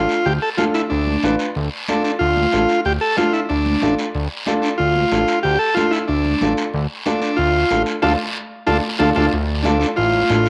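A fiery, danceable cumbia in D minor at 185 BPM opens with an overdriven combo organ carrying the melody up front, its buzzy, vintage tone doubled by a slapback echo, over a dark, woody upright piano and a fat, sawtooth analog bass with a detuned, filtered edge. A raspy guiro joins at 0.1 seconds, and bright, high-tuned congas follow at 0.6 seconds, sitting distant in the background. The harmony rests on a single D minor chord while the straight 4/4 groove drives forward. The band hits an accent from 8.0 seconds, capped by a drum fill, before a new section begins at 9.3 seconds. A wet spring reverb and small room ambience give the whole short cut, taken from a longer piece, a lively retro character.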